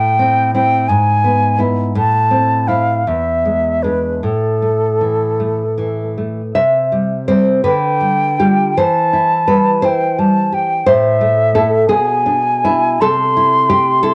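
Yearning and melancholic, this romantic duo for flute and classical guitar drifts in 6/8 at a slow, rubato 50-60 BPM, moving from A minor into C major at 6.6 seconds before sinking back toward minor chords. An airy, mellow silver concert flute carries the melody up front with soft attacks and expressive vibrato, its tone touched by a cassette-tape character, while a woody, full-bodied nylon-string guitar with old strings fingerpicks the accompaniment beside it. Moderate studio reverb surrounds this home recording on cassette, which is cut from a longer piece.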